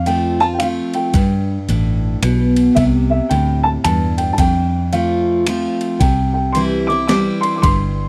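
A dark, woody upright piano carries the melody high in its register from the opening moment, with a bright, full-bodied picked steel-string acoustic guitar and a round, foam-muted electric bass joining at once in this easygoing, heartfelt slice of honky-tonk and classic country. The tune sways in 3/4 at 111 BPM with a gentle swing on the eighths, sitting in C major and tuned slightly under standard pitch. A gritty, compressed sampler-style drum kit comes in at 0.1 seconds, pairing a thumpy kick and high-tuned snare with ride cymbal and finger snaps, and it drops away at 7.8 seconds. The guitar and boxy piano sit up front, while the amped, dark bass anchors the low end as the chords move from F through G and C and back to F before settling on C. The dry, close sound recalls a 1970s studio, and this short passage is cut from a longer piece.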